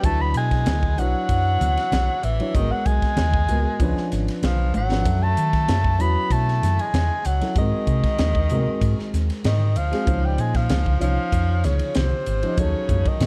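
This intense, slick electric jazz fusion cut opens with the full band together: a mellow soprano saxophone carries the melody with vibrato, subtone, scooped notes and a slapback echo, while an edgy, forceful tenor saxophone plays a quieter second line beneath it. A boxy grand piano supplies accompaniment, a round, amped fingered bass sits up front, and a polished acoustic drum kit with a high-tuned snare and punchy kick keeps a straight feel, breaking into a fill at 4.7 seconds. Very quiet, low-tuned congas sound distant, as if in a large room, within a dry, dark production.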